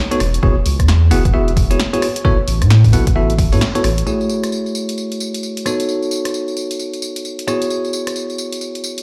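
UK garage in a two-step style, this late-night, skippy excerpt moves at 132 BPM with a swung 16th feel in F# dorian, led by a bell-like tine electric piano playing up-front stabs through a low-pass filter and tape echo, over a punchy analog drum machine of hi-hat, rim click, snare and tambourine. A deep, saturated sub bass with a fast attack holds thick, sustained notes until 4.0 s. The band hits an accent at 3.6 s, where a tape-warm electronic kick drops out until 4.1 s, and then a filter sweep on the electric piano begins at 4.1 s. The chords move through E69, A6, F#m9 and B9 and return to E69 in a large studio reverb, sounding as if played on a big sound system in a bare room.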